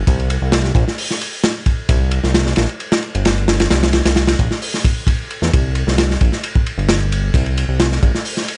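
Swaggering and gritty, this short breakbeat cut drives along in a straight 4/4 feel, built from just a fat analog bass and a crunchy breakbeat drum kit, both sitting up front in a dry, close mix with a rolled-off top. The bass growls low between G1 and E2 with a thick, nasal, detuned sawtooth and square-wave tone, saturated, with a fast attack, a filter pluck and sustained notes. The drums, entering at 0.1 seconds, sound like a small-room acoustic kit with a tight kick, medium-tuned snare, hi-hat and dark ride cymbal, their saturated, smooth texture giving the groove its warm, gritty weight.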